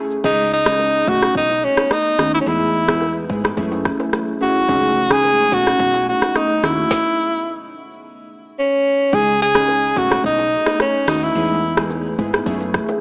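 Sultry and mellow, this afrobeats excerpt moves at 108 BPM in a straight 4/4 in C# minor, cycling through C#sus2, B7, E and F#m7 before a full stop from 6.9 to 9.1 seconds, after which the progression returns. A clear tenor saxophone sits up front as the jazz-style solo voice, its vibrato and subtone carrying the melody between C#4 and G#4. Glassy digital keys with a fast attack, decaying sine tone and chorus shimmer supply the accompaniment, while an electronic afro-pop kit brings a deep kick, woody snare, metallic hats, rim click, shaker and crash. Underneath, a hollow-body short-scale bass adds a round, punchy, amped low end, and very quiet close-miked congas and bongos ring softly. From 1.6 seconds a moody detuned sawtooth pad with a sub octave, slow attack and long release hangs in the background, and the whole mix has the hazy character of a home cassette recording played through a small speaker, bathed in moderate spring reverb.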